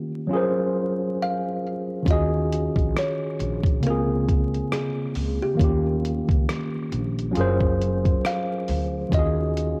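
Dreamy and cosy, this lo-fi hip hop excerpt drifts at 68 BPM with a gentle swing, opening on a worn, slightly out-of-tune tine electric piano, lightly overdriven and heard through built-in speakers, moving through lush chords like Gbmaj9#11 and Ebm11. A bright, hollow kalimba melody with a short thumbnail pluck arrives at 1.2 seconds, softened by cassette tape and tape echo. At 2.1 seconds, a woody, growly pizzicato upright bass joins a gritty, compressed sampler-style drum kit with a thumpy kick, hi-hat and rim click, all wrapped in light reverb and vinyl crackle from a home cassette recording.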